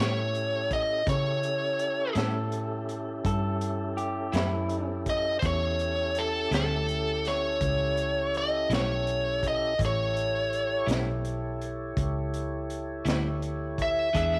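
A biting, overdriven lead guitar sings up front over an A7 chord in this soulful, gritty slow blues excerpt at 55 BPM in 12/8, backed by a compressed, slightly broken-up electric guitar with tremolo in the background, a clear tonewheel organ holding sustained chords through a slow rotary speaker, a round, foam-muted fingered bass, and a crunchy, saturated breakbeat kit with a punchy kick, high-tuned snare and rolled-off top, while a lo-fi second guitar through a small old amp adds a brief line from 2.2 to 4.9 seconds, all set in light reverb.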